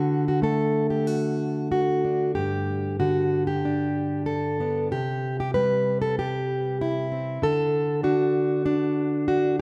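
A loose, rubato 4/4 pulse around 95 BPM carries this pastoral folk excerpt, where a lone fingerpicked plugged-in steel-string acoustic guitar, full-bodied and jumbo-sized with warm fresh strings, sits up front under slapback echo and light reverb in a dark, warm production, moving through D, G5 and C before slipping into an unchorded passage at 7.4 seconds that runs to the end of the excerpt.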